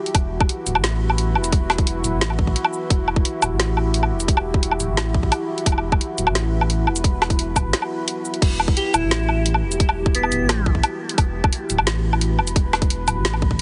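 A half-time drum and bass groove in 4/4 drives this tense, heavy fragment from a longer piece, with a tight electronic kick and a layered kit of woody snare, bright hi-hats, shaker, woodblock and crash cymbal sitting up front with a small-room character. Beneath them, a saturated sub bass adds a thick, sustained low end from the first moment. A deep, moody pad holds a single Emadd9 chord throughout, its detuned sawtooth tone darkened by chorus and its own reverb, and it pumps against the sidechain. After a short break at 7.7 seconds, an airy, dreamy lead enters at 8.8 seconds and sings softly until 10.6 seconds, shimmering with vibrato, chorus and tape echo. The whole mix is lightly reverberant but heavily compressed into a dense, radio-like sound with its top end cut away.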